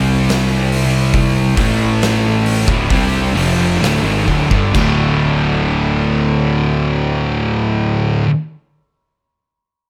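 A straight, slow 4/4 groove slows through the opening 4.7 seconds of this heavy, brooding stoner and doom metal cut from a longer piece, with an oversized low-tuned drum kit of punchy kick, fat snare, dark cymbals and gritty saturation in a pumping stone room that plays from 0.3 seconds, fills at 4.3 seconds and stops at 5.0 seconds. Two thick fuzz guitars, one distorted in the background and one very quiet, play alongside a bright, double-tracked cranked stack guitar with overdrive, all picking the riff over a warm, fuzz-driven electric bass. A very quiet, vintage ensemble organ-string holds mellow, soft-attack sustained chords moving from C5 through A5 and Dm to D5, all bathed in light studio reverb.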